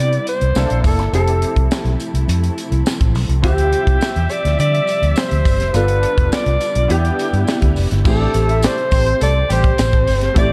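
A vintage, vibrato-laden alto saxophone carries the melody up front in this slick, nocturnal slice of polished 1980s jazz-funk pop at 104 BPM, backed by a round, foam-muted fingered electric bass, a crisp fusion drum kit with a tight kick, high-tuned snare and dark cymbals, clear grand piano accompaniment touched with ensemble chorus, soft-attack sul tasto strings holding sustained chords, a jingly tambourine in the background, and a brief horn section that joins at 8.2 seconds, set in light reverb and a dark, warm production.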